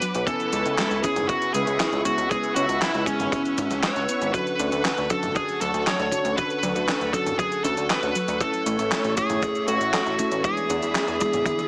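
A straight, steady 4/4 pulse drives this dreamy, nostalgic synthwave passage, cut from a longer piece, with a gated 80s digital drum machine up front laying down snare, handclaps, hi-hat, shaker and toms, all drenched in gated reverb and overdrive, while a punchy, saturated acoustic kick sits mid-forward with a rolled-off top. A glossy chorused synth bass enters at 0.1 seconds, its pulse and sawtooth tones pumping against the beat, and a lush, vintage string machine holds sustained chords in the background with its own ensemble chorus and sidechain pumping. Beneath these, a soft, round pluck traces detuned arpeggios through chorus and digital delay, and a mellow FM electric piano adds dark, full-bodied stabs with a touch of 12-bit sampler grit. Riding on top, a bright, smooth overdriven lead guitar carries the melody, picked and up front, colored by that same sampler grit and a digital delay. 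The harmony moves from C#m7 to Dmaj7, A and E7, a drum fill arrives at 11.5 seconds, and the whole mix has a light reverb and a small-speaker character.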